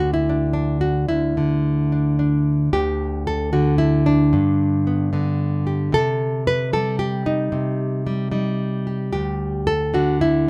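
Folk solo fingerstyle guitar in a pastoral, nostalgic mood at 112 BPM in straight 3/4, this fragment of a longer piece features a fingerpicked nylon-string guitar, full-bodied and up front with audible finger squeak and light reverb, spanning D2 to B4, shifting into a new passage at 2.7 seconds and moving through G and Cm chords.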